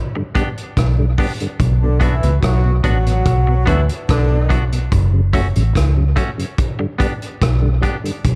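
A dark, warm small-room mix frames this short roots reggae excerpt in B minor, a serious, laid-back groove at 72 BPM in straight 4/4 that moves through G, Bm, F#m and back to G. The round, foam-muted fingered bass sits up front beside a punchy vintage kit of kick, hi-hat and rim click with a rolled-off top, while a clean, compressed hollow-body guitar with tape echo and a full, lightly overdriven tonewheel organ with chorus vibrato and slow rotary shading fill in the accompaniment. From 1.8 to 4.7 seconds a clear, loose horn section doubled in octaves adds a second line with light vibrato and a touch of tape echo.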